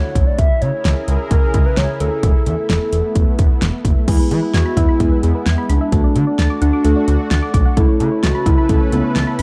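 A hollow, woody synth lead with vibrato carries the melody over a lush, detuned unison pad from the opening of this upbeat, bright synth-pop excerpt. A smooth gliding bass and a punchy, up-front electronic drum kit of kick, fat snare, metallic hats and crash join at 0.2 seconds. At 4.1 seconds a mellow FM electric piano enters in the background and a soft, round pluck adds gentle arpeggios, while the lead and pluck carry chorus and digital delay within a dark, warm production lightly touched by reverb.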